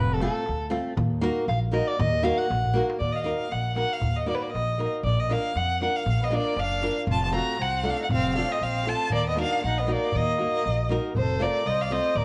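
Worn, warbling cassette tape gives this Balkan wedding-band excerpt a drifting pitch, and a moderate recital-hall reverb surrounds the players. The mood is fiery and virtuosic, set at 118 BPM in a swung 2/4 and in E-flat Hungarian minor. A clear soprano saxophone opens with a classical-style solo, distant and roomy with light vibrato. A rich, expressive bowed violin enters at 3.0 seconds to carry the melody up front, with vibrato and portamento, and the saxophone returns as a second line at 6.2 seconds. Underneath, a growly pizzicato upright bass on steel strings holds the low end. A bright fingerpicked flamenco guitar with fresh strings and audible finger squeak provides accompaniment, while a crisp metal-shell darbuka, played with soft hands, sits in the background.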